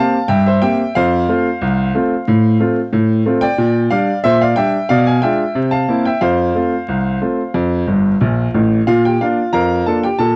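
In a straight two-beat pulse, this lively, jaunty ragtime excerpt features a solo baby grand piano, brilliant and up front with a long sustain, moving from C7 to F through F/A, Gm/Bb and Bdim7 before a fill at 7.9 seconds leads into a new section on Bb at 8.9 seconds, set in a dry, close 1970s-style studio sound with light reverb and vinyl crackle.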